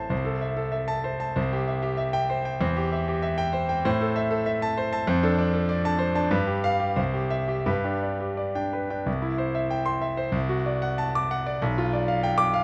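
Close, detailed microphones and a touch of light reverb put a solo concert grand piano up front, its tone smooth with a faintly vintage color and a deep bass. This brief cut from a longer classical work is a virtuoso piano study, brilliant and sparkling in mood, moving in a duple metre with a flexible, rubato feel. The piano alone carries the whole passage, ranging from A1 up to D6 across its roughly 12.6 seconds. The opening section circles through Am/C, C and C/E before settling onto A minor, Dm7/F and G7, then resolves to C and G. At 9.1 seconds a new section begins on C and leans toward the dominant through D7/C and G7/B, leaving the phrase open as the passage breaks off.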